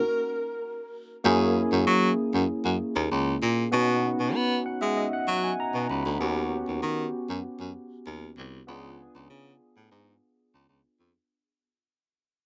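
Glossy and breezy, this polished 1980s jazz-funk pop fragment opens with a whispered, breathy alto saxophone phrase with scooped notes and analog delay that lasts only until 0.9 seconds, while a bright, barky tine electric piano, lightly overdriven through a combo amp and thickened by analog chorus, carries the chords and adds a fill at 4.3 seconds, and a warm baritone saxophone with vibrato and subtone takes the bass line from 1.2 seconds as the dreamy mix, soaked in lush hall reverb, fades out.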